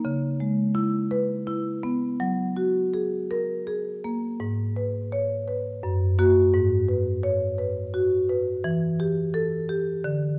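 A solo marimba played with medium hard mallets opens this short contemporary classical fragment, its rosewood bars giving a woody, dark and smooth tone that sits up front in the sound. The mood is flowing and reflective, moving at 85 BPM in a straight 3/4 in G# minor, with the instrument spanning from F#2 up to C#5. The opening harmony moves from C#m7 to F#add9, and at 4.4 seconds a second section begins, settling on G#m before passing through F# and G#m7 and turning to a shaded Em at 8.7 seconds. A moderate recital hall reverb surrounds the marimba, lending the notes a gentle halo in the room. Cut from a longer piece, the fragment runs just over 10 seconds and stops at 10.4 seconds.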